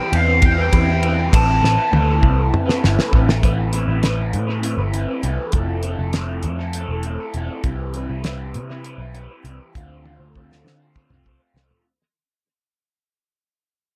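Psychedelic rock in 7/8 at 199 BPM, this mysterious, hypnotic excerpt in A minor opens with a lo-fi, overdriven lead guitar through wah and tape echo that sings only until 2.8 seconds, over a slightly broken-up, phaser-tinged rhythm guitar riff and a round, foam-muted bass sitting up front. A damped 70s kit with a fat snare, tight kick and rolled-off top, also treated with tape echo, rolls through fills while chords move from Cmaj7 and Amadd9 to Fmaj7 and Dm7. The echo-heavy small-room mix fades out from 3.4 seconds onward.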